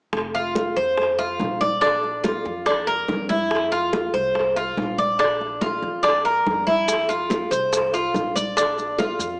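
Latin music in the Cuban son and guajira style, this sunny, warm excerpt moves at 142 BPM in a straight 4/4, cycling between F5 and Bb chords. The Cuban tres sits up front, picking mellow arpeggios on its double strings with a metallic edge and some octave-doubled courses, ranging from D4 to D5. Underneath, a woody, dark upright bass with gut strings plays thumpy pizzicato lines between F1 and F2, sitting low in the mix. High-tuned congas ring out under soft hands in a small-room sound, while tight, high-tuned bongos come across distant, as if from a larger space. Grainy, mellow maracas join close-up at 6.9 seconds, and the whole recording carries a light reverb and a small speaker sound.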